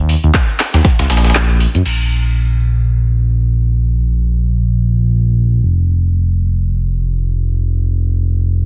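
In free time, this hypnotic, smooth deep house excerpt opens with the dark sawtooth-and-triangle synth bass, sidechain-pumping with portamento, vibrato and a moving notch, joined at 0.1 s by a layered deep house kit of metallic hats, handclaps and crash and a gritty, pitched-up breakbeat sampler kit with high-passed hi-hat and snare, then by a deep, tape-warm electronic kick at 0.3 s, before the drums fall away by 2.0 s and the bass carries on up front to 8.7 s in a heavily compressed radio sound with little reverb.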